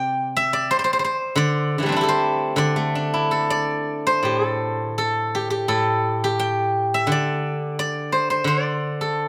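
Elegant and pastoral, this short cut from a longer Chinese traditional piece is a solo for steel-string zither, moving freely in rubato at around 79-90 BPM in 2/4 and set in the D shang mode. The zither, played with fingerpicks, rings bright and silvery up front across a span from A2 to G5, caught by close, detailed microphones with a light reverb. An opening passage gives way to a new section at 4.2 seconds, which runs until the excerpt ends at 9.3 seconds.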